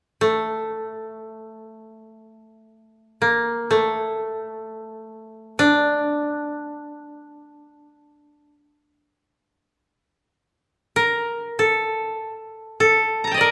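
A moderate recital-hall reverb surrounds a single koto that sits up front, its tone bright, woody and dry. This is Japanese traditional chamber music, austere and calm, unfolding in free time as a short passage cut from a longer piece. The koto plays solo from 0.2 seconds to the close at 13.5 seconds, plucked with fingerpicks across a span from A3 up to Bb5. At 11.0 seconds the music moves into a new section, which carries the performance to its end.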